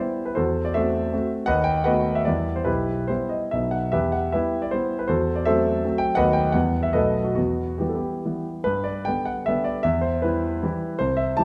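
Set in a wet recital hall with a 1.6-second reverb tail, a clear, up-front concert grand piano with a deep bass plays solo through this capricious, nostalgic excerpt from a longer romantic classical piece, a triple-time dance in 3/4 and E minor with dotted rhythms and a rubato pulse ranging from 130 to 176 BPM, its harmony circling between E minor and B7 before turning to G major at 8.7 seconds.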